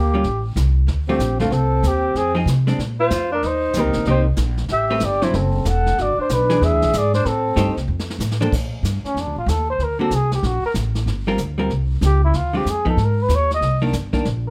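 A dark, roomy trumpet leads this brief excerpt of small-group swing and bop jazz, carrying the melody with light vibrato and taking a solo from 8.5 seconds to the end at 14.5 seconds. For the opening stretch a mellow alto saxophone with a soft subtone plays a second line, dropping out at 7.8 seconds, both horns sounding somewhat distant despite the trumpet's forward placement. Beneath them, a woody pizzicato upright bass sits up front, while a clean, compressed hollow-body electric guitar picks out dark accompaniment through harmonies moving from Am and Dm7 to Fm7, Eb6 and E7. A brushed drum kit with a boomy kick and medium-tuned snare keeps a 188 BPM swing in 4/4, marking the turn into the solo with a fill just before 8.5 seconds. Light reverb lends the whole a warm, sophisticated studio glow.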